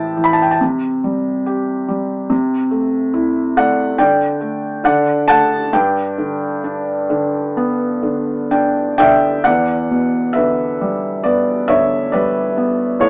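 A soft, intimate, felt-muted upright piano plays alone and up front in this wistful, dark classical fragment cut from a longer piece, moving with a rubato feel through chords from Am to D and G, adding a fill from 8.0 to 9.5 seconds before settling on Em7 as a new section begins, all heard through light reverb and an AM radio sound.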